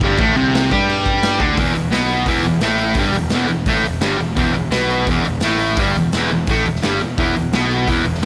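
Rowdy and raw, this garage rock excerpt drives a bright, double-tracked fuzz guitar riff up front over a round, overdriven picked bass and a gritty, punchy acoustic drum kit of crash, hi-hat, kick and snare in a small, lightly reverberant room, moving from a Gsus24 chord to E5 at 1.6 seconds.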